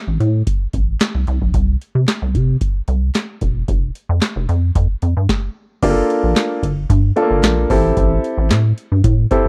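A dry, close recording with a 1970s studio feel and very little reverb opens this short cut from a longer early-eighties boogie funk track, set in G dorian at 112 BPM with a straight 4/4 pulse and a slick, late-night mood. A rubbery, hollow square-wave bass enters almost at once, bouncy and dark, its filter pluck and moving notch giving each sustained note a resonant, wave-folded character as it ranges from E1 to C3. A booming analog drum machine joins at 0.2 seconds with a deep kick, crisp snare, handclaps, metallic hi-hats and crash cymbal, the snare, clap and hats sitting in a short room with a tape-warm tint. After a stop from 5.3 to 5.8 seconds, a concert grand piano enters at 5.8 seconds with natural tone and deep bass, playing accompaniment between A3 and A4 over Gm9 and then Am7. Bass, drums and piano all sit up front in the mix, keeping the groove immediate.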